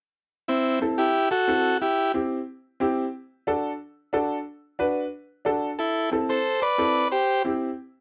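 A straight, quick 4/4 Latin groove sets a festive, sunny mood in this short passage cut from a longer piece. A buzzy, vintage combo organ sits up front with the melody, in two brief phrases starting at 0.5 and 5.8 seconds. From 0.8 seconds a woody, worn, slightly detuned upright piano, also up front, accompanies over chords moving through Am, C, D and Bm, all in a moderate studio ambience.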